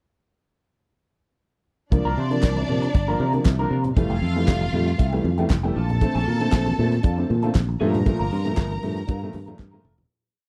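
A dry, fat-snared 1970s drum kit drives this celebratory 117 BPM disco breakdown from 1.9 seconds with a four-on-the-floor beat and open off-beat hats. Growly octave bass with slides sits up front beside it, while choppy sixteenth-note wah guitar on the edge of break-up, a boxy grand piano groove and lush violin-section runs into held notes move through C9sus4, Fmaj9, Bbmaj7 and Gm7. Faint syncopated congas and hollow backbeat group handclaps sit in the small-room background before a fade-out from 8.1 seconds and a closing drum fill at 9.6 seconds.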